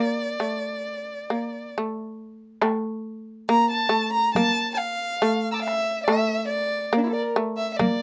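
Japanese traditional chamber music in D hirajoshi at a meditative, solitary 69 BPM with a free rubato feel, where an up-front dark violin sings the melody with vibrato, portamento and a soft bowed attack, over a mellow, buzzing plectrum-plucked shamisen second line, joined at 2.6 s by a small-room taiko ensemble on heavy sticks, all captured by close, detailed microphones with light reverb.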